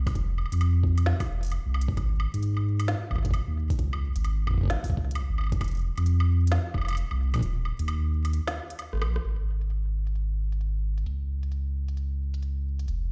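A deep, round sine sub bass sits up front through this eerie, glitchy IDM excerpt in F minor at 132 BPM with swung 16ths, joined by a soft, overdriven electronic kick that drops out at 7.4 seconds for a break, while an overdriven, low-passed electronic kit of crisp hats, woody snare, rim clicks and woodblock, touched with delay, carries on through a drum fill at 8.9 seconds into a filter sweep on the drums from 9.2 seconds, the sound coming as if from a big system in a bare room with large studio reverb.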